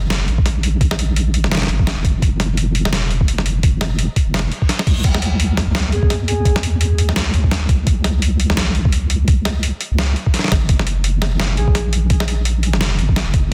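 A dense, heavily limited mix with light reverb carries this heavy, tense half-time drum and bass fragment, cut from a longer piece, where a deep, dark wobble bass with chorus and tube saturation sits up front beside a gritty, pitched-down sampler-style kit of crash, hi-hat and medium-tuned snare with soft clipping. A compressed, thumpy electronic kick enters at 0.4 seconds, and a very quiet electronic reverse cymbal leads into the change from F# to C#m around 5.0 seconds. In the background, a breathy, flute-like synth lead with vibrato, analog chorus and digital delay surfaces only briefly, first at 5.9 seconds.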